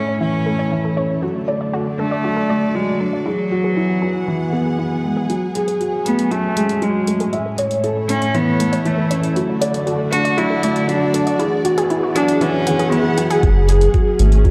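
A straight 4/4 pulse at 118 BPM carries this moving, melancholic piano and strings electronica in F# minor, an excerpt cut from a longer piece and tuned slightly low. From the start a felt-muted upright piano plays a riff up front, soft and mellow with audible action noise and a touch of delay, while a studio string section holds sustained chords in a sul tasto, bowed blend that pumps with the sidechain. A reedy cello with a gut-string tone carries the melody until 13.4 seconds, low-pass filtered and echoed, as a warbling, lo-fi pluck plays detuned sawtooth arpeggios in the background with chorus and delay. At 5.3 seconds a layered electronic hi-hat enters and a build-up begins, with a filter sweep on the pluck, over chords moving from A through D and Eadd9 to F#madd9. At 13.4 seconds a muffled, thumpy kick arrives with a round, deep analog bass, tube-saturated and swept by a filter, as the dark production sits in a wet echo-chamber reverb.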